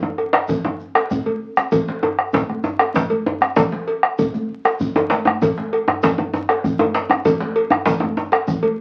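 High-tuned congas with a bright, thin-skinned snap and hard hands open this short cut from a longer West African traditional drum piece, joined at once by a deep djembe played with soft hands in a lively room. A round, close bombo and a metallic cowbell arrive at 0.2 seconds, and a second djembe, deep and up front in a small room, enters with a grainy, mellow shekere sitting in the background at 0.5 seconds. The ensemble moves in a straight 12/8 at 130 beats per minute counted in dotted quarters, and the mood is earthy and powerful. A drum fill breaks through at 4.8 seconds before the groove carries on through a single section. The whole performance sounds like a very old 78 rpm record, with vinyl crackle over a wet studio ambience.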